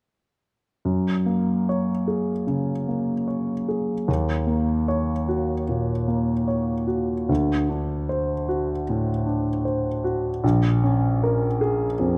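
A clear, intimate grand piano plays alone from 0.8 to 12.2 seconds in this hazy, serene impressionist classical excerpt, its rubato phrasing drifting through F#add9, D#m7, D7 and A#m7 chords with long sustain and audible action noise, captured up front by close, detailed microphones and bathed in a moderate stage reverb.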